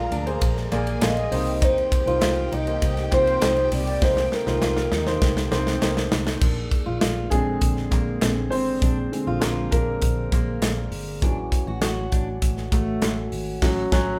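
Piano-driven pop at 100 BPM in Bb mixolydian, anthemic and uplifting, cut from a longer piece and played by a band in one room with a moderate large studio reverb. A mellow, horn-like synth lead with chorus and vibrato carries the melody over a lush, bowed violin section in the background until 6.1 seconds, while a glass harmonica holds ethereal chords, a jumbo steel-string acoustic guitar fingerpicks a riff, a dark, foam-muted electric bass plays the bass line, very quiet group handclaps add percussion, and a polished, up-front drum kit with bright cymbals plays throughout, with a fill at 4.0 seconds. From 6.4 seconds the woody upright piano takes a solo over the band, which closes on a shared accent.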